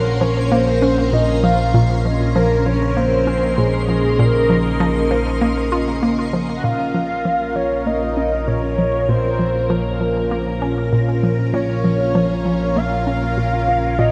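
Mysterious and hypnotic, this excerpt of ambient, sequencer-driven space music in Bb minor at 98 BPM sets a breathy, flute-like synth lead with vibrato over lush string-machine chords treated with phaser and ensemble chorus, a fat analog bass on Bb1, a hollow, bouncy square pluck riff entering at 0.2 seconds with chorus and delay, and a faint twinkling granular shimmer, all steeped in a dreamy hall reverb as the harmony moves from Bbmadd9 to Bbm at 6.6 seconds.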